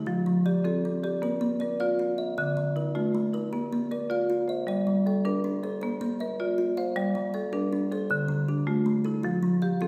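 A woody, dark marimba struck with medium hard mallets sits up front, its padauk bars giving smooth, percussive arpeggios that turn in a hypnotic, mbira-style interlocking cycle rooted in southern African tradition. Beside it, a kalimba plucked by thumb rings out with a hollow-box body, close-miked, dry and full, spinning its own arpeggios across a slightly higher range. Both parts play together from the opening to the close of this 9.9-second cut from a longer piece, moving in a steady, straight 12/8 over an equiheptatonic scale. The harmony cycles through F, Bb and Dm before a second section at 4.7 s shifts toward Gm, Bb and Dm, returning to F at 9.2 s. A reverberant recital hall, suggesting a church or concert hall, surrounds the performance and lends the hypnotic, warm mood a spacious glow.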